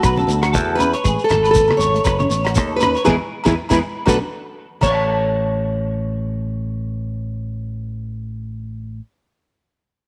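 Lightly reverberant, this joyful, danceable highlife guitar band passage in A major moves at 118 BPM with a swung 16th feel. It is led by a woody, boxy plugged-in steel-string acoustic guitar melody over a punchy, up-front fingered electric bass and clean hollow-body semi-hollow electric guitar arpeggios bathed in ensemble chorus and tape echo. Meanwhile a small fingerpicked nylon-string guitar, a dark cloth-damped thuddy drum kit with fat snare and tight kick, ringing agogo bells, a grainy shekere and very quiet bright congas drive the groove through a band accent at 3.1 seconds and a drum fill at 4.1 seconds. After that, only the steel-string guitar melody, the semi-hollow guitar arpeggios and the bass carry on from 5.3 seconds.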